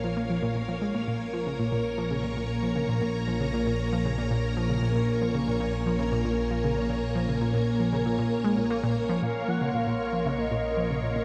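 A lush, vintage string machine sits up front with sustained Bb minor chords, giving this hypnotic, mysterious piece of sequencer-driven ambient space music its full-bodied core at 116 BPM in a straight 4/4. Beneath it, a round, chorused analog pluck plays a riff through shimmer reverb and analog delay over a fat, detuned bass, while a bubbling, resonant texture with random filter steps fades in throughout the background. At 9.2 seconds a smooth, expressive synth lead with vibrato enters with a melody, all within a dark production and a huge, wet reverb in this brief cut from a longer piece.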